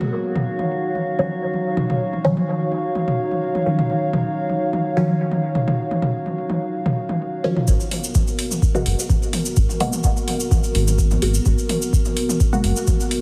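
Dub techno at 127 BPM in G# minor, hazy and deep, opening on a moody, detuned analog pad sustaining a D#m9 chord, dark filtered stabs treated with phaser and dub echo, overdriven electronic toms, and a calm, glassy harmonics texture with drifting overtones, all breathing with sidechain pumping. At 7.7 seconds the chord moves to G#m9 as the glass texture stops and a round, up-front analog bass arrives alongside a deep, tape-warm kick drum and a grainy, bright cabasa, with metallic, low-pass-filtered electronic hi-hats joining at 7.9 seconds. The mix sits in a moderate echo-chamber reverb with a heavily compressed, radio-like sound, cut from a longer piece.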